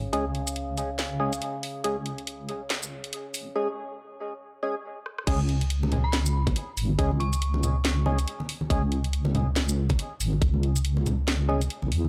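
A deep, wobbling sawtooth bass sits up front through this cavernous, brooding deep dubstep cut, rolling at 140 BPM with a half-time, swung feel and a gritty, lightly reverberant hardware sound. A resonant drone with moving overtones opens the build-up and drops out by 3.6 seconds, while hollow, percussive organ stabs with dub echo and a garage kit with a cracking snare, hi-hat, rim clicks, shaker and crashes carry the filter-swept intro into a drum fill. At the drop at 5.3 seconds, a tight, layered electronic kick punches in. Low-tuned congas with thick skins follow in the background from 5.8 seconds, and an eerie, inharmonic FM bell warbles briefly from 6.0 seconds.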